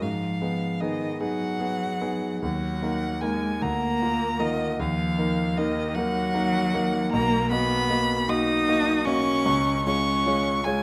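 A slow, rubato sway in 6/8 at 51 BPM, counted in dotted quarters, carries this serene romantic movement for piano trio in Eb minor, cut from a longer piece. A single bowed violin sings the melody up front, its rich, vibrato-laden tone smooth and even, with a smooth top. Beneath it, one bowed cello traces a second line with a focused, close-miked voice. The concert grand piano supplies the accompaniment, its warm, intimate, natural sound reaching into deep bass with long sustain and audible action noise. The harmony moves from Abm7 through Ebm and Bb/D, settles on Bmaj7 at 7.1 seconds, and arrives on C# at 9.4 seconds. Close, detailed microphones capture the trio inside a wet recital hall reverb of about 1.5 seconds.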